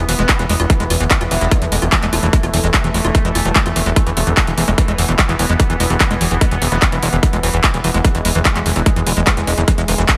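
A straight pulse drives this alien, driving psychedelic trance passage, cut from a longer piece. A punchy electronic kick sits up front from 0.3 s, layered with a big-room dance kit of handclaps and clanging hi-hats that carries a small-room character. Beneath it, a fat, detuned sawtooth analog bass holds a low E with a filter sweep. Further back, a squelchy, resonant acid bass riff, smoothed by chorus, trails dub echo and pumps against the kick, while a bubbling texture of sustained chords shifts through random filter steps inside its own reverb. A very quiet, distorted FM wobble bass surfaces briefly from 0.2 s and again at 6.7 s, all within a light overall reverb.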